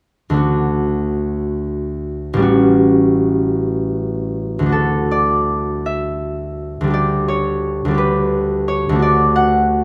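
Dreamy and peaceful, this brief classical excerpt for solo concert harp drifts in a rubato 6/8 at roughly 46-60 BPM in D major, moving from D to G/D at 6.9 seconds and settling back on D at 9.0 seconds. The fingerpicked harp sounds from 0.3 to 9.8 seconds, spanning A1 to F#5 with a warm, ringing tone placed up front. Close, detailed miking and light reverb capture the harp in fine detail, and a second passage begins around 4.7 seconds.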